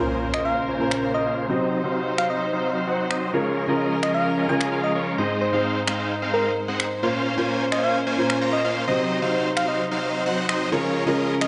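A huge, detuned supersaw riff with a filter sweep and delay drives this emotional, anthemic festival progressive house excerpt in Bb minor at 130 BPM, opened by an electronic impact and joined at 0.3 seconds by a round, FM-style struck synth melody with chorus and vibrato and layered electronic finger snaps, over a boxy grand piano with gritty 12-bit sampler character and veiled, muted chamber strings sustaining chords from a distance in a lush hall.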